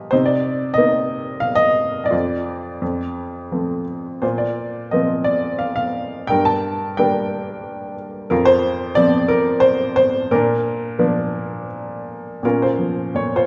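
Heard in a church or concert hall with moderate reverb, this bittersweet, brooding classical passage for solo upright piano, clear, intimate and woody with short sustain, audible action noise and an up-front presence, unfolds with uneven, rubato beats at 88 BPM in 3/4 and Bb major, moving through Cm7, F, Bbsus2, Gm and Bb before a new section arrives on Bbm at 12.4 seconds, cut from a longer piece.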